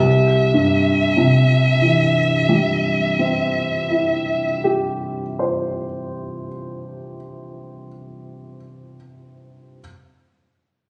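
Romantic classical music for violin and baby grand piano, this short passage cut from a longer piece has a lyrical, tender mood and a freely breathing rubato feel over a slow pulse. The violin carries the melody up front with a rich, expressive bowed tone, singing with vibrato and gliding portamento before it falls silent at 4.6 seconds. Beneath it, the piano supplies an open, warm accompaniment that spans from deep bass up into the middle register and continues alone until 9.8 seconds. Both instruments sit close to the listener, while a recital hall's long, wet reverb lends the sound a lingering bloom. The recording has the intimate, compressed character of a phone capturing the performance from within the room.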